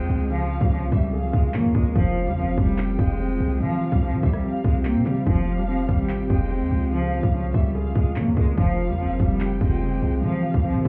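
A half-time drill groove at 145 BPM in F minor opens this menacing, cold passage: an up-front electronic kit of hard-clipped kick, crisp hi-hats, handclaps and rim clicks carries a tape-like, 12-bit sampler grit, while a punchy, heavy 808 bass with a fast attack and decaying tail drives beneath it. A distant, earthy bowed cello carries the nasal melody with light vibrato, joined by a lush, expressive violin section with digital delay playing a second line, while a dark, mellow grand piano and a very quiet, blurred granular pad entering at 0.3 s move through Db6, Fmadd9 and Csus4. A faint downlifter sweeps through the first 2.0 s, and the whole mix sounds muffled through a wall with club reverb and vinyl crackle, cut from a longer piece.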